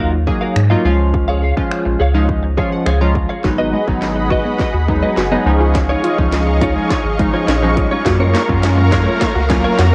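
A straight 4/4 house groove of punchy kick, cracking snare, hi-hat and finger snaps drives this carefree, upbeat dance-pop clip, with a deep, dark analog bass pumping to the sidechain beneath glossy, bright retro synth keys and a clean, picked electric guitar riff. The keys, guitar and drums carry a cassette-tape character, and the whole piece sits in a moderate spring reverb with a homespun feel. At 3.4 s a build-up begins as a lush, detuned supersaw pad and a very quiet unison pluck playing arpeggios join over a drum fill, and a faint electronic riser enters at 6.0 s.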